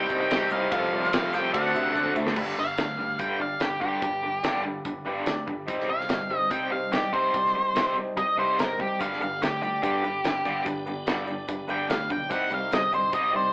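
A boxy AM-radio sound and a wet studio reverb frame this swaggering, driving classic rock excerpt, played at 145 BPM in a straight 4/4 by a band captured live in one room. Up front, a dark octave-fuzz lead guitar carries the melody from the start and takes a solo from 2.4 seconds to the end, over chords moving through Cm, F/C, D7 and G. Behind it, a cranked stack guitar with overdrive and tremolo and a second overdriven electric guitar pick bright riffs throughout, while a double-tracked raw garage guitar with spring reverb joins them only until 2.4 seconds. A growling fingered electric bass, direct and amped with overdrive, and a damped 70s drum kit with a fat snare and tight kick drive the groove, the drums landing a fill just before the solo. A clear, woody upright piano with short sustain sits in the background. A piping tonewheel organ with key click and slow rotary swirl holds very quiet sustained chords, returning at 9.0 seconds alongside a grainy, close tube shaker.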